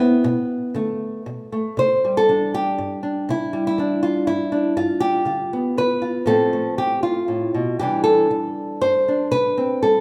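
A fingerpicked nylon-string guitar carries this gentle folk piece alone from 0.0 to 10.0 seconds, its small, warm tone sitting up front in the mix. The playing is rubato in 3/4 at around 119 BPM in C major, ranging from G2 to C5 and giving the fragment, cut from a longer piece, a relaxed, unhurried feel. After a brief opening on Bm7, the harmony settles on Cadd9 at 1.8 seconds, then moves through G7 and F/A before returning to Cadd9. A wet, large studio reverb with a 1.4-second tail surrounds the guitar, lending the live room recording a soft, spacious halo. The overall mood is gentle and warm.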